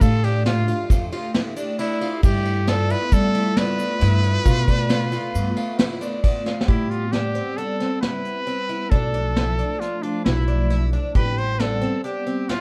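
Tense and driving, this progressive instrumental excerpt in 5/4 sets a bright, vibrato-laden trumpet melody over a hollow, flute-like pad with ensemble chorus, shimmering octave-doubled twelve-string guitar arpeggios with delay, a woody, thumpy upright bass and a roomy brush drum kit, with a grainy tube shaker in the background until 6.2 seconds and a drum fill at 6.5 seconds leading into the second section.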